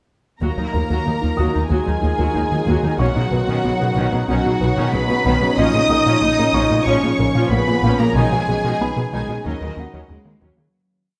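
A straight 4/4 pulse at 93 BPM drives this brooding, vast hybrid orchestral and electronic film score in Eb minor, where a rubbery square bass riff and a woody wave-folded pluck with chorus and delay run pulsing ostinatos under lush bowed violins carrying the melody, with a second violin section and mellow French horns doubling the tune at the octave, while violas and cellos push driving ostinatos, double basses double the bass line, a deep ambient pad with chorus sustains chords from 1.3 seconds, and a felt-muted upright piano adds sparse, boxy single notes, the whole heard in a wet scoring-stage reverb before fading out from 8.2 seconds.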